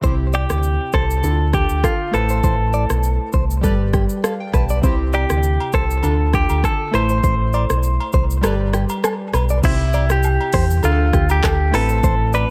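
A lightly swung 100 BPM afrobeats groove in C major drives this breezy, romantic clip from a longer piece, with an electronic, overdriven drum kit built on a deep kick, metallic hi-hats, rim clicks, shaker, handclaps and crash cymbal, joined by a dark, round fingered electric bass sitting up front. Two bright, clean, direct-recorded electric guitars, one picking a compressed riff and the other a twangy, scooped melody from 0.3 seconds, both soaked in dub echo, float over analog keys with a detuned, wave-folded tone, filter sweeps and chorus. Agogo bells and woodblock slip in quietly in the background at 5.1 seconds, and the kick drops out briefly before the next section arrives at 9.6 seconds, all within a light, echo-heavy digital ambience.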